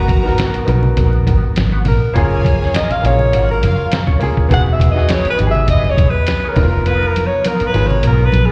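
Lush, smooth 1970s-style soul at 102 BPM in F# major, this short cut features a warm, vibrato-laden alto saxophone solo up front with slapback echo and analog delay, backed by a round, foam-muted electric bass, muffled sampler-style drums with a thumpy kick that enter at 0.1 seconds and close with a fill from 6.9 seconds, a natural baby grand piano, a slightly broken-up wah guitar with spring reverb, bright damped congas, and a dark, woody string section that drops out at 3.9 seconds, all heard through a live venue's PA with recital hall reverb over a G#m9 to C#13 progression.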